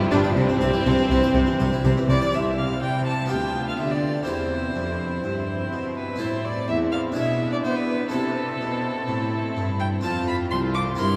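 Harpsichord, with its full Italian-style plucked tone, sounds from the very start of this brilliant, lively baroque-style concerto movement in C major at 124 BPM in 4/4, together with the background violin and lush viola sections. These are joined by a clear cello section and a focused double bass section that drops out at 2.2 s. Above them an up-front solo violin carries the melody with rich vibrato, shadowed by a very quiet, close violin section, all bathed in a wet cathedral reverb as the chords move from C through Am toward F at 10.0 s.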